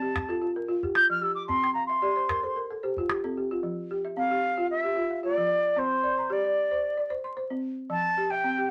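A pure, expressive concert flute with vibrato and a soft attack carries the melody up front from the first moment, over woody, round balafon arpeggios played with rubber mallets, while a small, dry calabash sounds close by until 3.2 seconds. This hypnotic, joyful West African string and xylophone music moves at 112 BPM in a straight 4/4 in F major, opening with a flute solo as the balafon adds a fill from 1.5 seconds. Moderate club ambience and vinyl crackle surround this brief cut from a longer piece.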